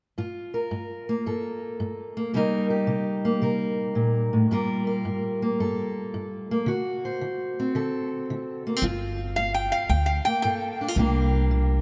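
Soulful and smoky, this acoustic country blues fragment opens with a boxy, fresh-stringed fingerpicked steel-string guitar playing a swung accompaniment through minor seventh chords, sitting up front in a vast, echoing cathedral reverb. At 8.8 seconds a woody, thumpy upright bass on gut strings joins with dark pizzicato notes. From 9.4 to 10.9 seconds a bright, metallic lap resonator guitar adds a brief nasal slide melody high above.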